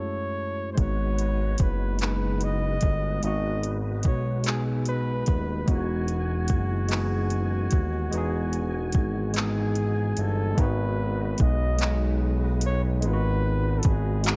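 A slow, straight six-eight sway carries this late-night, sultry R&B fragment, where a breathy flugelhorn plays a mellow jazz-style solo with light vibrato and scooped notes over a worn, slightly out-of-tune tine electric piano, joined at 0.8 seconds by a clear tonewheel organ with chorus vibrato and slow rotary speaker in the background, a nasal, sawtooth-edged synth bass up front, and an overdriven electronic drum kit of soft kick, metallic hi-hat and handclaps whose kick falls silent from 9.3 to 10.6 seconds, set in light reverb and digital ambience.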